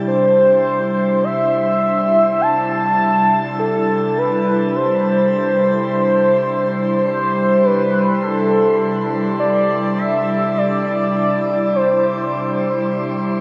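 A breathy, airy pad opens this peaceful, weightless ambient passage at 0.0 s, holding sustained chords on C in C major with a soft, slow attack and a long release, its detuned tone thickened by chorus and a noise layer. A filter sweep runs across the pad for the whole of its 13.4 seconds. Almost at once, at 0.1 s, a velvety synth lead enters with the melody, its smooth, wave-folded sawtooth voice carrying vibrato, chorus and delay and sitting up front above the pad until 12.9 s. The tempo is a slow 52 BPM in a straight 4/4, and a shimmering reverb with a 7.8-second tail bathes the sound in a wet, floating space. This short passage is cut from a longer piece.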